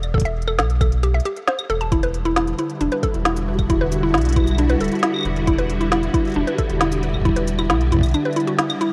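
A straight 4/4 groove of deep electronic kick, woody snare, crisp hi-hat, cabasa and claves drives this intricate, eerie IDM excerpt, where a round sine sub bass sits up front beneath woody, percussive FM mallet-like plucks tracing chorused, delayed arpeggios, a silky vintage string machine with phaser and ensemble chorus joins at 2.2 seconds over chords moving from A7sus2 to Em9, and the whole band hits an accent at 8.6 seconds, all wrapped in light reverb and the warbling pitch drift of worn cassette tape.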